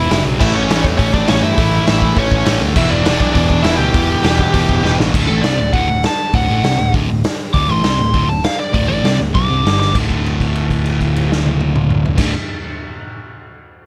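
Rebellious and rowdy, this punk rock excerpt drives in a straight 4/4 as a bright, biting lead guitar up front carries the melody and then takes a solo from 5.1 to 9.9 seconds, over crunchy and sludgy overdriven rhythm guitars in the background, a double-tracked distorted guitar riffing only until 5.1 seconds, a growly, punchy picked bass, and a raw garage drum kit with a punchy kick, medium-tuned snare and rolled-off top that throws in fills before a closing held note, all captured dry.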